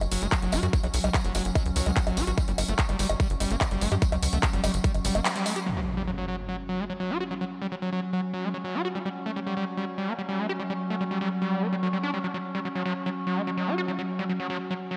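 Psychedelic trance at 146 BPM in F# phrygian, hypnotic and alien, cut from a longer piece: a punchy, up-front electronic kick, a layered dance kit of bongos, handclaps and hi-hat, a jingly acoustic tambourine and a tight, wave-folded sequencer bass drive the groove for roughly the first five seconds, while a squelchy, aggressive distorted acid line with chorus, tape echo and sidechain pumping rides over an evolving, warbling wavetable pad; after an electronic impact at 5.7 seconds, the pad takes a filter sweep beneath the acid line through to 15.0 seconds, inside a lush hall reverb.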